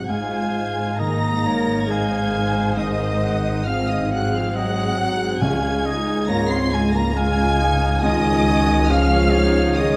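Tender, uplifting cinematic film score for full orchestra in a slow, rubato 3/4 at 69 BPM, opening on a smooth, close violin section carrying the high melody over a lush second violin line, an airy distant flute, a mellow French horn section holding sustained chords, an intimate baby grand piano with audible action noise, and a cello section in the bass, joined almost at once by a punchy clarinet, an even viola section and a focused double bass section. The harmony moves from Abadd9 to Dbadd9 at 5.4 s, where softly struck, round timpani sound in the background until 6.7 s. A moderate scoring-stage reverb lends space to this excerpt from a longer piece.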